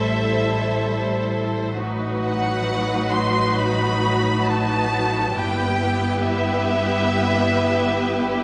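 In free time, this slow, elegiac movement for string orchestra in E minor unfolds over 8.4 seconds, a fragment cut from a longer piece. The first violins carry the yearning melody between E5 and C6 with a warm, expressive vibrato, sitting up front in a lush ensemble sound. Beneath them the second violins hold a smooth, even line, while the violas supply a rich accompaniment touched with portamento, both heard from a more distant perspective. Cellos and double basses anchor the bass together, the cellos bowed with vibrato and the basses focused and lush. The harmony moves from Am7 to B7/A at 1.8 seconds and settles on Em/G at 5.3 seconds, with a wet scoring-stage reverb surrounding the ensemble.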